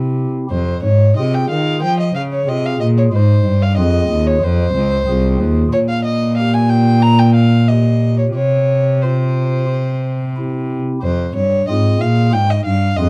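This baroque-style sonata movement with continuo, a short cut from a longer piece, unfolds in F minor at 92 BPM in a straight 4/4, with an introspective, solemn mood. A close, rich cello carries the bass line from the start, its bowed gut-string tone reedy and set up front, while a soft pipe organ on stopped flute stops fills in the accompaniment with hollow, mellow baroque voicing and a gentle chiff. A single violin enters at 0.5 seconds with the melody, bowed up front in period style with a warm, reedy gut-string sound. The harmony moves from F minor through Bb and a suspended C before coming back to F minor at 11.0 seconds. The dark, warm production leaves the three players dry, with little reverb around them.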